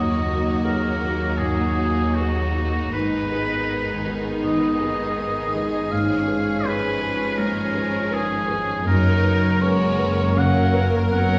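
Bathed in the reverb of a recital hall, this tender, hopeful cinematic film-score excerpt moves freely around 80 BPM in F# major, with a clear, up-front oboe and a focused, lush violin section carrying second lines over a dark, mellow grand piano, a distant viola section, a ringing, very quiet concert harp playing arpeggios, and a close, bowed double bass section beside a cello section in the background, as the chords pass from D#m through G#m and C#/G# to settle on F# at 8.9 seconds.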